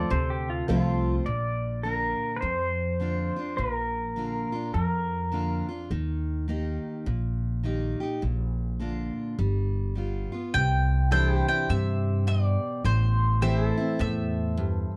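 A dark, lightly reverberant production frames this easygoing, down-home honky-tonk and classic country excerpt at 104 BPM with a swung 4/4 feel, where a growly pizzicato upright bass and a full-bodied picked dreadnought acoustic guitar sit up front throughout, a mellow baby grand piano with audible action noise murmurs briefly in the background, and a twangy, compressed pedal steel played with fingerpicks and slide takes a solo with volume swells from 1.3 to 10.5 s before the music shifts from Bb major to C major at 10.5 s, where a woody double-strung mandolin carries the melody over sustained pedal steel chords.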